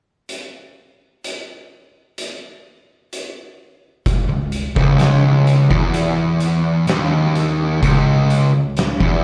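Heavy, brooding stoner and doom metal at a slow 64 BPM in C# minor opens with an oversized, low-tuned acoustic drum kit of fat snare, punchy kick and hi-hat in a bright stone room, gritty and saturated up front, before a dark, double-tracked fuzz guitar riff enters at 4.3 seconds, picked low between C#2 and E2 and heard with club reverb through a live venue's PA.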